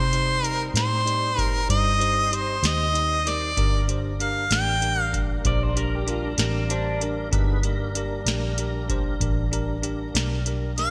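Soulful and smoky, this slow blues in a straight-feel 12/8 opens with a harmonica out front, playing the melody in a jazz style with vibrato, scooped notes and tongue slaps, its tone lightly overdriven and doubled by a slapback echo. Beneath it, a bright, bell-like tine electric piano comps with a clean, direct sound, while a tonewheel organ holds full, lightly overdriven chords through a slow rotary speaker and chorus vibrato. A dark, round, foam-muted fingered bass sits up front, and from 0.1 seconds a booming analog drum machine adds a deep kick, a tonal snare and metallic hats. The harmony moves from C minor to G minor at 3.6 seconds. Between 5.5 and 7.0 seconds, an electric guitar through a small old amp slips in a brief, picked second line, slightly broken-up and lo-fi, with a warbly pitch drift and slapback echo. Light reverb and a digital ambience frame this short excerpt cut from a longer piece.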